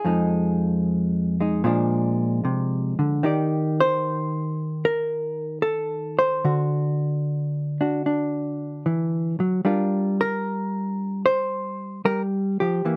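This short excerpt of solo jazz swings at a relaxed 75 BPM in 4/4, its eighth notes given a lilting swing feel. A lone hollow-body electric jazz guitar carries everything from 0.0 to 13.0 seconds, ranging from a low F2 up to D5. Its tone is dark and clean, fingered rather than picked, with a compressed, rounded evenness and the body resonance of a hollow instrument, sitting up front in the mix. The harmony moves from Fm7 to Bb7 and settles on Ebmaj7, then passes through D7 to Gm7, giving the passage a warm, gently swinging mood. Close, detailed microphones and little reverb make the guitar sound intimate and dry, and the fragment is clearly cut from a longer performance.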